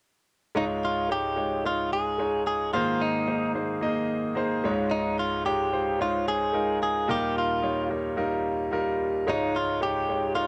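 Carrying the texture of a cassette home recording in a small, wet booth, this excerpt of hopeful, piano-driven pop in Db lydian moves at 110 BPM in a straight 4/4, as a brilliant concert grand with deep bass and long sustain lays down add9 chords from 0.5 seconds while a clean, compressed, direct-recorded electric guitar picks a bright, up-front melody over it from 0.6 seconds.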